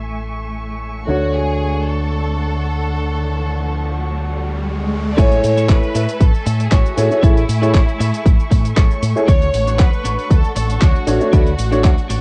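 A straight 4/4 nu-disco groove is cut from a longer piece, and from the first moment a fingered electric bass with an envelope filter sits up front, driving under a dark, mellow baby grand piano that plays accompaniment with long sustain. Behind them, a distant chamber string section holds bowed chords that pump against a sidechain, and at 1.1 seconds a rich, smooth studio violin section brings in the melody with vibrato and analog delay. An electronic riser climbs in at 3.4 seconds and builds into the drop at 5.2 seconds, where a punchy, layered electronic kick lands up front. Alongside it comes a gritty, compressed sampler-style kit of crash cymbal, handclaps, hi-hat and shaker, while a clean, picked electric guitar riff with analog chorus sits scooped in the background. The mood is sunny and feel-good, moving between major-seventh chords, and the home cassette recording adds tape character and a moderate room reverb.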